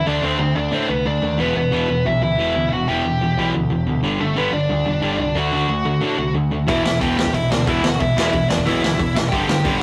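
A bluesy overdriven lead guitar carries the melody up front through this urgent, raw punk rock excerpt, its distorted tone trailed by a digital delay. Beneath it, a bright distorted electric guitar drives the riff from the start alongside a growling picked electric bass that sounds punchy and overdriven. The music runs at 182 BPM in a straight 4/4 in E minor, moving through Em, G and D before landing on a G5 at 9.3 seconds. At 6.7 seconds a second overdriven electric guitar slips in behind the others with its own riff, and a raw garage drum kit arrives up front with a punchy kick, a medium-tuned snare and hi-hat, its gritty, saturated sound pumping in a small room with a rolled-off top. The whole has a rough rehearsal-room character, set in a moderate studio reverb.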